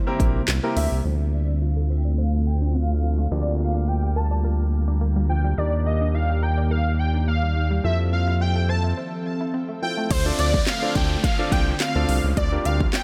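A deep, round analog bass sits up front in this bittersweet, driving dance-pop excerpt, its dark sustained tone pumping against the sidechain beneath a chord cycle that moves from Dm7 through Gm7/D, Ebmaj7 and Fmaj7. A punchy house drum kit, with a cracking snare, metallic hats, handclaps and crash cymbal, hits only briefly at the opening before dropping away. A glassy, warbling FM pad with ensemble chorus and built-in reverb rests in the background beside a polished grand piano, both filtered and pumping. An airy, dreamy lead carries the melody high above with vibrato and portamento, while a nasal, detuned analog pluck spins arpeggios through chorus, phaser and delay during a long filter sweep that gives way to a break at 9.0 seconds. At 10.1 seconds the drums return for the drop as an electronic downlifter sweeps through the digital ambience to the end.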